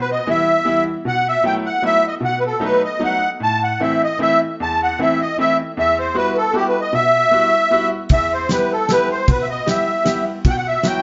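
Nostalgic and bittersweet, this brief musette waltz in 3/4 opens with a reedy, shimmering, vintage accordion carrying the melody up front over a bright, woody upright piano whose chords ring with long sustain. A dry, damped drum kit with dark cymbals and a tight kick enters at 8.1 seconds and drops out at 10.9 seconds. Meanwhile the whole band plays live together in a wet stone room whose reverb lends a soft glow, with nothing above 7.6 kHz, as the harmony moves from E minor through B7 and A minor before settling on a suspended B chord.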